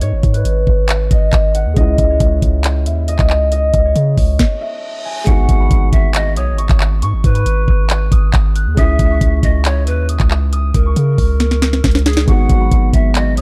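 A knocking trap kit sits up front, with sharp snare, handclaps and bright hi-hats carrying a tape-warm, produced edge over a half-time feel at 137 BPM in G# minor. Beneath it, a deep, sine-toned 808-style bass hits with a fast attack and long, mellow decay, giving this dark, hard-hitting trap cut much of its weight. A ringing, thumb-plucked concert harp carries the melody through low-pass filtering and digital delay, while a smooth, vintage grand piano stays in the background over a G#m7 to C#madd9 progression. The beat stops at 4.4 seconds as a very quiet reverse cymbal rises into an electronic impact. At 5.3 seconds, breathy cane pan pipes with vibrato and a crisp, chiffy attack enter as a second line through their own delay. After a drum fill, a hollow, flute-like pad with slow attack and chorus joins at 12.3 seconds in this dry, dusky-sounding excerpt.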